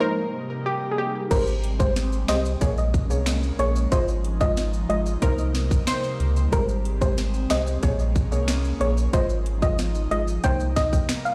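A straight 4/4 groove at 92 BPM carries this bouncy, summery dancehall excerpt in Ab major, tuned to A4 = 441 Hz. It opens with a short break in which a breathy pad, treated with chorus, phaser and sidechain pumping, holds sustained chords. Alongside it, a dark, gentle pluck with chorus plays the accompaniment, while a detuned, evolving analog pluck with chorus and delay adds a second line. At 1.3 seconds the full groove arrives. An up-front electronic kit brings a tight kick, sharp snare, metallic hi-hats, finger snaps and crash. A deep sine-and-triangle sub bass with an octave layer sits just as forward, and ringing maracas stay in the background. A round pluck melody with chorus and delay rides on top, and the analog pluck briefly returns at 5.2 seconds. The harmony cycles through Cm7, Abmaj7, Bbm7 and Fm7/Ab, and the mix has light reverb that suggests a big sound system playing in a bare stone room.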